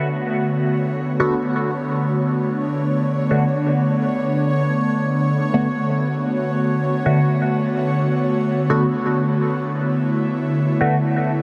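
Nocturnal and meditative, this short excerpt of dub techno moves at 128 BPM in a straight 4/4, resting on a single Bm7 chord in B minor. An airy, breathy pad holds sustained chords from D3 to F#4 throughout, its detuned triangle and sawtooth tones layered with noise and a moving notch, softened by a slow attack, long release and chorus, and placed up front. From 1.2 s to 10.9 s a resonant sweep polysynth adds juicy, evolving stabs in the same range, blending pulse, sawtooth, sine and wave-folded tones with a filter sweep and a fast attack, treated with chorus, phaser and dub echo. Behind them, a bubbling stepped-filter texture sits quieter on C#5, its bright, detuned sawtooth jumping through random filter steps, with chorus and its own reverb. The whole sits in a huge ambient reverb with an 8.1-second tail, and the dense, heavily limited master keeps it full and modern.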